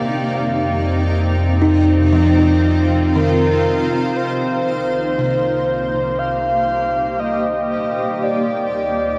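Serene and melancholic, this ambient fragment drifts over a cloudy, evolving granular pad and a round, deep analog bass that fades in from 4.2 seconds, while a buzzing, woody kalimba ripples arpeggios through tape echo, a faint string-like drone hums until 4.3 seconds, and from 3.2 seconds a breathy, flute-like synth lead carries the melody, all bathed in huge reverb and the warbling pitch drift of worn cassette tape.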